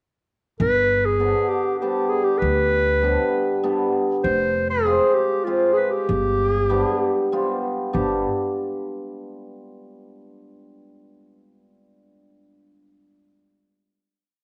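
A mellow, softly attacked clarinet opens at 0.6 s with an ornamented modal melody over woody, thumpy pizzicato upright bass playing root and fifth on the main beats, and at 1.2 s a shimmering hammered cimbalom joins with off-beat triad chords, giving this short, bittersweet yet festive klezmer piece in 3/4 a dark, ringing glow inside a wet spring reverb before it settles on a final chord.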